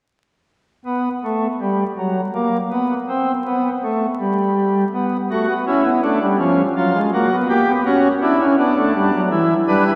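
A nasal cornet stop on pipe organ, voiced in a romantic manner with tremulant and placed up front, carries this brief, driving yet contemplative passage from a baroque-style four-part fugue in 3/4 at 82 BPM. It enters at 0.9 seconds and ranges from E3 to B4 over harmony that moves from Bm to Em, all heard from further back in a wet church reverb with a 3.4-second decay and a vinyl crackle.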